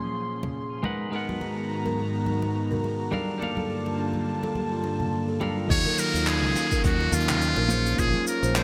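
A clean, twangy electric guitar and an airy, breathy pad with a warbling chorus open this wistful, smooth sunset chillout excerpt. They are soon joined by a soft brush drum kit with handclaps, hi-hat and shaker, bright congas in the background, and, from 1.1 seconds, a woody, buzzing kalimba playing arpeggios through digital delay. At 5.7 seconds a brilliant, up-front muted trumpet takes the melody with delay, while a fretless electric bass, a deep layered electronic kick and a background downlifter enter beneath it, all over minor ninth chords, a swung sixteenth-note feel and moderate plate reverb in a bright 1980s-style digital production.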